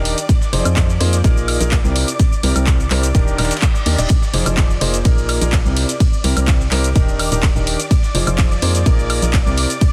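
A punchy, tape-warm electronic kick sits up front from 0.3 seconds, driving a straight 4/4 groove at 126 BPM in this energetic, soulful piano house section cut from a longer piece. Around it, a dry analog drum machine supplies handclaps, hi-hat, ride cymbal, shaker and woodblock with small room ambience, while a gritty, compressed breakbeat sampler-style kit adds its own hi-hat, ride and medium-tuned snare at a very quiet level. A hollow, organ-like FM bass with a fast attack and dark decay anchors the low end in F dorian, pumping against the kick. Alongside it, an intimate grand piano plays a riff, where the action noise can be heard, cycling through Fm7, Bb7sus4, C7 and Ebmaj7. High above, a silky, detuned sawtooth string pad holds slow-attack chords in the background with ensemble chorus, vibrato and a moving notch, also pumping with the sidechain. A reverse cymbal rises briefly from 3.3 to 4.1 seconds, all within a dense, heavily limited modern master.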